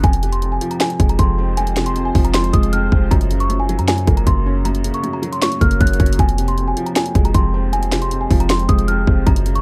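A dark, menacing trap-style hip hop excerpt at 156 BPM in a half-time feel, set in F phrygian and moving from F minor to G-flat and back. A bell-like, delicate celesta carries the melody high above a soft, felt-muted upright piano whose accompaniment has an intimate quality, with audible action noise. From 1.3 seconds a deep, moody ambient pad drifts in the background, its detuned, evolving sustained chords coloured by chorus and its own reverb. Up front, a boomy 808-style bass with a fast attack and decaying tail anchors the low end, while an overdriven trap kit punches through with a hard-clipped kick, sharp snare and bright hi-hats. The overall production is dry, dark and warm, giving the sweet celesta and hushed piano a brooding contrast against the heavy low end.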